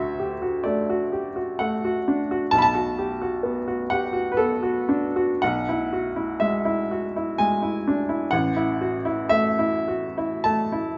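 A romantic classical nocturne for solo piano, this brief excerpt moves in a slow, rubato 3/4 between 50 and 66 BPM in D major, tuned to A4 = 436 Hz, with a nostalgic, serene mood. The bright upright piano sits up front with a brilliant, woody tone and short sustain, spanning A1 to B5 as the harmony passes from D through Bm7 and E7/B to A5 by 8.3 seconds. A moderate recital hall reverb surrounds it, and the sound is rolled off above 7.5 kHz.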